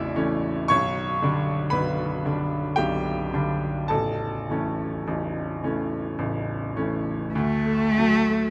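This romantic classical duo for cello and baby grand piano has a serene, tender mood, unfolding slowly at 45-60 BPM in 3/4 with a flexible, rubato feel. The piano plays alone from the start, spanning A0 to D6 with a bright, natural tone and long sustain, moving through A and G/B harmonies before returning to A. At 7.3 seconds the music shifts to a new section on a D chord, and a single bowed cello enters on an A3, taking the melody. Its voice is rich and expressive, with a soft attack, vibrato and portamento, sitting slightly louder than the piano. Both instruments sound up front through close, detailed microphones and light reverb, and the passage is cut from a longer piece, ending at 8.5 seconds.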